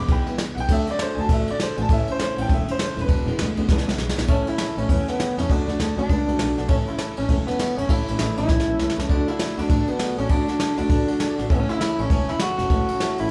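A lightly reverberant, live-in-one-room sound frames this rollicking, retro rockabilly excerpt, cut from a longer piece and moving with a swung 4/4 feel. A woody, vintage upright piano takes a solo over the opening seconds, joined by a bright, full-bodied dreadnought acoustic guitar picked in the background and an earthy, bowed double bass that sits distant with a light vibrato. The jazz brush kit is up front and airy, with dark cymbals on the ride, a medium-tuned snare and a boomy kick, and it marks a fill just before the electric guitar arrives. At 4.3 seconds that electric guitar takes the melody through a small old amp, its tone twangy and slightly broken-up as it stays prominent to the end. The chords cycle among E, D and A.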